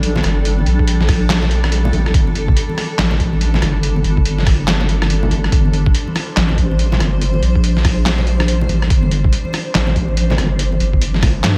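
A brooding, cavernous slice of deep dubstep opens on a blurred, granular cloud pad holding a G minor chord over a deep, chorused wobble bass that sits up front, while muffled, pitched-down trip hop drums with handclaps, hi-hat, rim click and a medium-tuned snare move at 142 BPM in a swung half-time feel. Distant conga hands with dub echo drift in the background from 0.2 seconds, and a thumpy, tape-warm electronic kick joins at 0.8 seconds. The sampler-style drums sound compressed and re-recorded in a small room, all set within a digital ambience.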